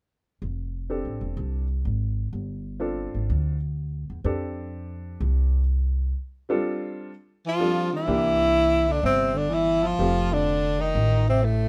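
Light reverb frames this playful, sophisticated small-group swing and bop recording in 4/4, cut from a longer piece. A woody, pizzicato upright bass sits up front from 0.4 seconds, with a clear, vintage-toned upright piano accompanying with a short sustain. At 7.5 seconds a breathy tenor saxophone with light vibrato and subtone takes the melody up front, joined by a mellow, close-miked baritone saxophone on a second line, shortly before the harmony moves into a new section.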